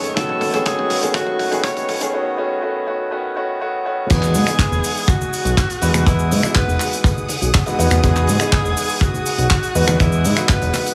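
A breathy, whispered tenor saxophone carries the melody with dub echo and a filter sweep through the opening build-up, floating over a sunny, groovy nu-disco excerpt at 122 BPM in E major. A polished grand piano and distant, bowed strings both pump with sidechain as a tight acoustic kick and a fat, detuned, saturated analog bass push forward, while a loose indie kit with dark cymbals adds handclaps, finger snaps, cabasa and toms. After a drum fill and a break from 2.1 seconds, the drop lands at 4.1 seconds on an Emaj9 chord, and soft, low-tuned congas join at 4.2 seconds in a small, lightly reverberant room.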